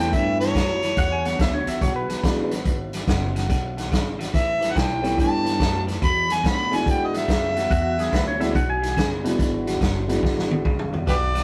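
Electric blues shuffle at 143 BPM in E mixolydian, soulful and swaggering, where an overdriven harmonica with vibrato, tongue slaps and scooped notes leads up front over a dark, boxy grand piano, a slightly broken-up guitar riff through a small old amp with phaser, a woody, thumpy pizzicato upright bass, a punchy vintage drum kit that plays a fill at 10.2 seconds, and a clean, twangy lap steel slide line, all captured in a rough rehearsal-room recording with light reverb and tube saturation.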